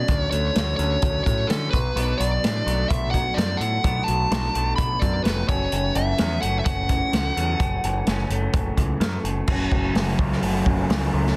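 A fuzz-soaked lead guitar opens this restless, moody indie rock passage, its distorted melody sitting up front with an analog delay trailing behind it, while a dark, slightly broken-up electric guitar through a small old amp plays a lo-fi riff underneath. Almost at once a growling picked bass arrives, bright, overdriven and forward in the mix, together with a vintage acoustic drum kit whose punchy kick, medium-tuned snare, hi-hat and crash carry a natural small-room character and a rolled-off top. At 2.0 seconds a raw garage guitar joins with a second overdriven riff, warm and set in the background, colored by a lush chorus. The lead melody drops out at 9.0 seconds, leaving the two riffing guitars, bass and drums to carry a brief closing section. The mix is dense and heavily limited in a modern way, with a small room ambience around the band, and the passage is cut from a longer piece.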